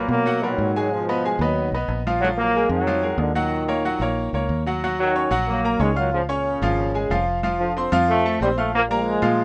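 Light reverb gives this short cut from a longer latin piece a gentle sense of space, with the bright grand piano and a mellow trombone section both sitting up front. The mood is passionate and fiery, carried on a straight feel in four. The trombones play the melody as a tight, roomy section in a low register, with a pop-style polish. The grand piano supplies brilliant, natural-sounding accompaniment across a broad range, while a fingered electric bass holds the low end with a direct, amped, foam-muted tone. Around 4.8 seconds the harmony turns to a new passage, moving through Db and F before settling on Bb5 at 8.7 seconds.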